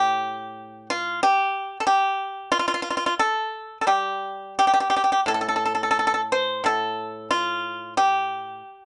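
A lone pipa, played with fingerpicks and placed up front with a dry, percussive bite, opens this short 8.8-second fragment of Chinese traditional solo music, moving in a loose rubato around 86-95 BPM across a span from A2 to C5, its longing, contemplative mood framed by light reverb and a dark production.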